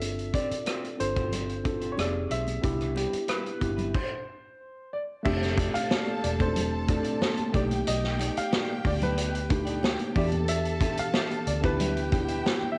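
Recorded at home on cassette with light reverb and a small room's ambience, this short cut from a lush 1970s-style soul piece feels smooth and warm. A bright, worn baby grand piano carries the melody through cassette tape and analog delay, set over a slightly out-of-tune tine electric piano, a dark, round, foam-muted electric bass and an up-front vintage drum kit with dark cymbals and a tight kick. Very quiet, high-tuned congas add percussion, a twangy, slightly broken-up guitar riff with subtle chorus sits in the background, and after a stop from 3.9 to 5.3 seconds a smooth, bowed violin section with vibrato and analog delay enters at 5.3 seconds with a second line.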